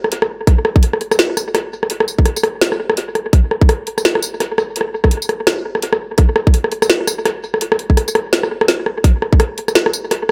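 This heavy, tense drum and bass fragment, cut from a longer piece, opens with an electronic drum kit of hi-hat, rim click, snare and tambourine, its bright hats and woody snare carrying a dub echo. An electronic kick drum joins at 0.5 seconds, tight and up front, placed a little louder than the kit. The groove runs at 168 BPM in 4/4 with a half-time feel and a 59% swing on the sixteenths. Both parts sound layered and produced, re-recorded in a small room. The kick drops out from 8.3 to 9.0 seconds, and the kit carries on alone after the kick stops. A moderate plate reverb and an echo-heavy mix surround the drums, with a faint mains hum underneath.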